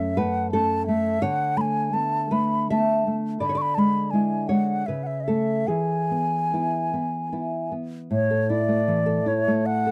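An airy wooden flute sits up front with vibrato and a soft attack, singing an expressive melody between C#5 and C#6 in this lyrical, romantic duo in A major. Alongside it, a thumb-plucked nylon-string guitar, also up front, gives warm classical accompaniment, moving through F#m, Bm7/D and E7/D to A/C# and E before settling on A5 at 8.1 s, in an unhurried, rubato 3/4 at around 70-87 BPM. The sound is dry and close, like a 1970s studio recording, in a short passage taken from a longer piece.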